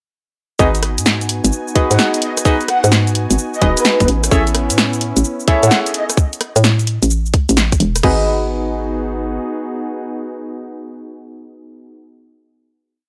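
A dry, gritty recording with light reverb and transformer saturation carries this late-night, soulful two-step UK garage piece at 129 BPM in G# phrygian, where an overdriven garage drum kit with a tight two-step kick and crash and a punchy analog drum machine with skipping swung hats, rims, cabasa and snare drive the drop from 0.6 seconds alongside a hollow, bouncy FM bass line, while a deep, mellow chord stab echoes sparsely over a smooth, warbling vintage pad and a breathy flute-like synth lead with vibrato floats short phrases from 1.9 seconds before the stab and pad hold the final G#m7 chord from 8.0 seconds.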